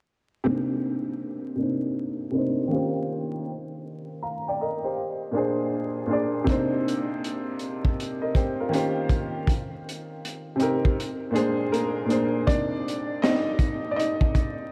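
This lo-fi hip hop excerpt drifts at 80 BPM in 4/4 and C minor, with a 65% swing on the sixteenths and a hazy, reflective mood, tuned a touch sharp to A4 = 441 Hz. A woody, slightly detuned upright piano with a vintage character opens at 0.4 s, sitting up front behind a low-pass filter that is swept through most of the passage. It moves through rich extended chords such as Cm9, Eb13 and Bb9, briefly pausing on a chordless stretch before landing on Bb9 and then returning to Cm9. At 6.5 s a crunchy breakbeat kit arrives with a punchy kick, a high-tuned snare and hi-hat, its sound saturated, gritty and dark with a rolled-off top. The kick falls away at 11.0 s before the piano steps into a short closing section. The whole mix is dreamy and soaked in a long cathedral reverb, with vinyl crackle adding to the haze.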